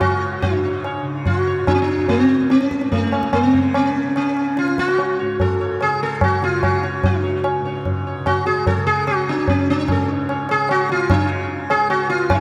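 In straight 4/4 at 146 BPM and speeding up, this meditative, serene Hindustani classical passage, tuned to A4 = 442 Hz and cut from a longer piece, runs about 12.4 seconds with all three parts playing throughout. An up-front, plectrum-plucked sitar carries the melody between A3 and C#5, its round, buzzing tone ringing with sympathetic strings and trailing a diffuse ambient delay, while a softly plucked tanpura holds a shimmering, mellow drone from C#2 to C#3 beneath it. Low-tuned tabla with a short ring and a small-room sound supplies the percussion, and the whole mix sits in a lush hall reverb with a 2.6-second decay that gives it a dreamy, soaked quality.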